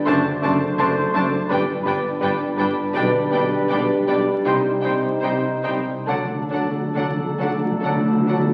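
A rubato 4/4 pulse drifting between 67 and 85 BPM carries this lyrical, slow romantic orchestral movement in G major, a short piece of a longer work heard through the crackle of a very old 78 rpm record and a wet recital hall reverb. A lush, vibrato-rich violin section sings the melody over mellow French horn chords, ringing thumb-plucked harp arpeggios, distant dark trumpet stabs and second lines from a pure flute section, a clear oboe, a vintage-toned clarinet and quieter violins, while bassoon and very quiet violas fill the accompaniment above a bass of dark tuba, focused cellos and double basses. At 6.1 seconds, as the harmony reaches D, up-front timpani struck with hard mallets enter with an articulate fill.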